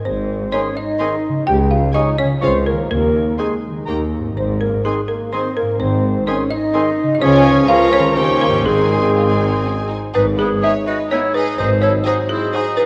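A worn, warbling cassette sheen and a wet concert-hall reverb wrap this playful, magical film cue in Ab major at 126 BPM in 3/4, where a dry, woody marimba struck with hard mallets carries the melody alongside a lush violin section, while a hollow flute, clear second violins, clarinet and oboe weave second lines, a ringing thumb-plucked harp spins arpeggios, French horns hold sustained chords, viola and bassoon fill the accompaniment, and double basses, cellos and a vintage tuba anchor the bass before the harmony turns to G#m at 10.2 seconds.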